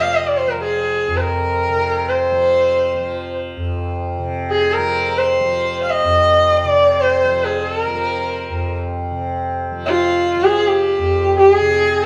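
A clear, focused bowed sarangi carries the melody up front, its single player gliding between notes with portamento and light vibrato while its sympathetic strings add resonance. This is Hindustani classical music with a longing, solemn mood, heard as a brief fragment cut from a longer performance. Under the sarangi, a softly plucked tanpura holds a low drone, its buzzing, shimmering tone sitting well beneath the lead in level. Both instruments sound throughout the full 12.1 seconds, played live together in one room. A stone room reverb adds a damp, resonant halo that gives the sarangi's line a slightly distant air.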